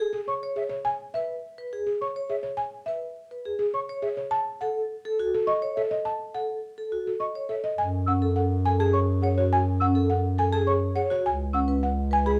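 A buzzing marimba played with soft mallets carries the melody up front, its hardwood bars sounding woody, round and smooth in this bright, hypnotic passage of minimalist classical pattern music in three. Beside it, a vibraphone struck with medium mallets spins metallic, ringing arpeggios shaded by a fast motor vibrato. A mellow silver concert flute traces its own arpeggios higher up, its tone pure and hollow with tongued notes and vibrato. At 7.8 s, as the music settles into F# minor, a close-miked bass clarinet enters up front with a low, warm line that deepens the texture. A moderate large-studio reverb and a dark production hold the parts together in this short cut from a longer piece.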